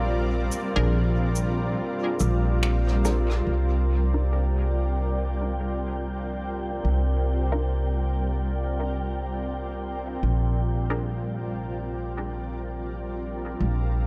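Meditative and hazy, this ambient dub excerpt rests on an up-front granular cloud pad of blurred, detuned chords moving from Bb7 to Cm11 and back, with a woody, thumpy pizzicato upright bass on gut strings beneath and a breathy, wind-like tuned noise texture drifting in the background. Distant, roomy cabasa, finger snaps and rim click, soaked in dub echo, play only from 0.5 to 3.4 s and close with a short fill, while a muted, phased chord stab with a fast filter pluck sits in the background until 11.1 s. The echo-heavy mix carries a light studio reverb, and the swung sixteenth-note feel keeps it loose.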